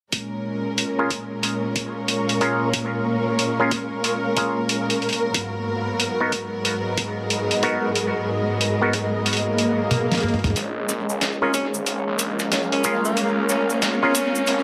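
A playful, funky glitch hop excerpt opens with a lush, bowed string section holding sustained chords over a gritty, pitched-down sampler-style drum kit of hi-hat, tape-warm snare and toms, layered with a knocking electronic kick. The strings pump against the sidechain under a low-pass filter. The drums sit up front, tape echo trailing behind them, and a swinging feel drives the groove. A cloudy, evolving granular pad drifts in above, and a stringy auto-wah clav punches out stabs through a filter sweep. A background electronic swell and riser arrives at 9.5 seconds, a drum fill follows, and at 10.6 seconds a build-up begins as a thick, swirling detuned saw bass and a bright, close cabasa join while the strings' filter sweeps. At 11.4 seconds a forceful tenor saxophone enters with a jazz-style solo of scooped notes and vibrato, set in an echo-heavy mix with a drenched spring reverb.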